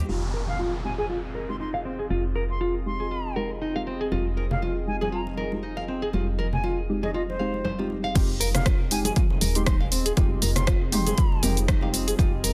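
Swung 4/4 afro house with a spiritual glow layers a smooth analog pad in the background, dark fingerpicked nylon-string guitar arpeggios with finger squeak and tape echo under a filter sweep, deep warbling chord stabs and a woody, round FM bass, each pumping to the sidechain, while an electronic downlifter sounds and a pure, distant concert flute carries an expressive melody; ringing congas enter from a large room at 4.1 s, and at 8.2 s the drop brings a punchy overdriven kick up front with a filtered deep house kit of hi-hat, rim click, shaker, toms and crash, all inside a dense, heavily limited modern master.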